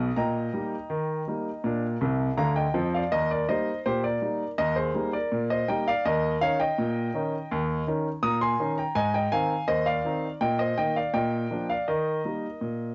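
A lone, clear grand piano plays lively, cheerful ragtime at 82 BPM in 2/4 with a straight feel in Eb major, its intimate, up-front sound carrying audible action noise and long sustain, ranging from C2 to Eb6 through light reverb and the muted top end of a home cassette recording, with a fill from 2.0 to 3.1 seconds before a new section moves through Eb7 and Ab and settles back on Eb at 11.9 seconds in this cut from a longer piece.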